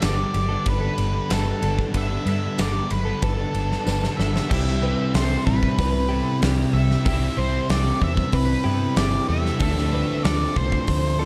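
A huge, punchy arena drum kit sits up front with a round, foam-muted vintage bass, driving a hazy, blissful shoegaze and dream pop excerpt in straight 4/4 while a dark octave-fuzz lead guitar carries the melody through distortion and slapback echo. Behind them, a shimmering fingerpicked twelve-string acoustic spins arpeggios with analog chorus, a compressed direct-recorded clean electric plays a riff through reverse reverb, and a thick fuzz guitar adds a chorused low riff, while a very quiet jingly tambourine plays until 4.0 seconds. After a drum fill, a bright, double-tracked overdriven guitar joins at 4.5 seconds as the chords move from Gadd9 to Cmaj7 and then Dm7, all within a dark, small-room production.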